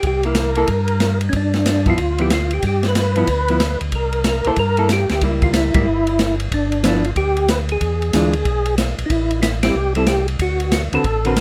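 A soul jazz organ trio swings in at once at 185 BPM: a round, percussive tonewheel organ carries the melody through slow rotary speaker and chorus vibrato, while a mellow second organ part holds down the bass with light overdrive beside an up-front acoustic kit of boomy kick, medium-tuned snare, hi-hat and dark ride cymbal. A clean, fingered hollow-body electric guitar joins at 0.3 s to accompany changes that move from C and G6 through C#dim7 and E7b9 to Am7 and D6, and the band hits shared accents at 5.7 and 9.6 s. Light reverb surrounds this soulful, swinging passage, which is cut from a longer piece.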